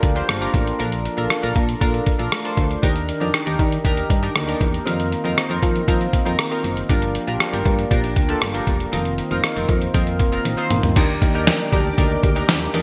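A straight 4/4 groove at 118 BPM drives this nostalgic, romantic 1980s-style pop cut from a longer piece. A lo-fi sampler-style drum kit sits up front with a thumpy kick, muffled tone and gated reverb, and it plays a fill from 10.5 to 11.0 s. Beneath it, a punchy, round FM bass anchors the harmony, while chorused retro synth keys carry the glossy accompaniment over chords of Gm7, Bbmaj7, Ebmaj7 and F7sus4, with a fill of their own around 6.1 s. A mellow, dark electric guitar plays a clean, fingered riff in the background with subtle chorus and delay. As the harmony moves to Ebmaj7 at 11.0 s, a vintage ensemble organ-string enters with phased, sustained chords, and a jingly, distant tambourine joins briefly, all set in a moderate plate reverb and bright digital production.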